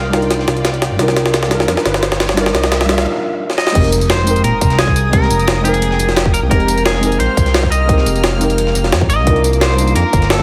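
Soulful and dreamy, this liquid drum and bass excerpt in F minor at 174 BPM opens with a build-up: a gritty, pitched-up jungle drum kit with a high-tuned snare sits up front over a very quiet breakbeat kit, while a background riser climbs toward a short break at 3.1 seconds. At 3.8 seconds the drop lands with an impact and a tight, layered electronic kick. An up-front, smooth sawtooth-and-square synth bass with vibrato anchors the low end, moving from Cm11 to Fm11 under a deep, nasal chord stab with chorus and dub echo, clear bowed symphonic strings pumping in the background, and a bright, twangy, slightly broken-up electric guitar melody trailed by digital delay, all set in a moderate concert-hall reverb.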